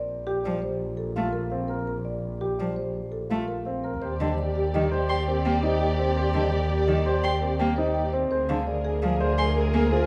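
Minimalist classical pattern music, propulsive and hypnotic at 168 BPM in 6/4, cut from a longer piece, where a woody rosewood marimba carries the melody over an up-front bowed double bass with portamento, long-sustaining piano arpeggios and a cello played with soft attack and vibrato, until the harmony moves from Bb major to Eb major at 4.0 s, bringing in a dark classical-style soprano saxophone line in the background and a lush studio string section holding chords, joined at 5.1 s by an intimate sul tasto violin arpeggiating high, all set in a moderate recital hall reverb.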